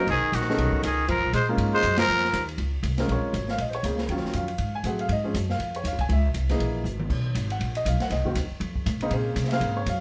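Moderate studio reverb surrounds this cut from a longer performance, where the band plays live together in one room with a smoky, cool mood. It is small-group swing and bop in Bb minor at a brisk 239 BPM in 4/4, with a swung eighth-note feel. A straight-muted trumpet carries the melody up front with a nasal, raspy, growling tone and light vibrato, while a clear tenor saxophone adds a punchy, forceful second line with scooped notes; both horns drop out by 2.5 seconds, just after a band accent at 2.0 seconds. A warm, natural grand piano comps throughout, supported by a woody, thumpy pizzicato upright bass placed up front. The acoustic drum kit, with dark cymbals, a medium-tuned snare and a boomy kick, keeps time and breaks into a fill at 6.9 seconds. The harmony moves through rich minor ninths, a major seventh and an altered dominant, closing back on Bbm9.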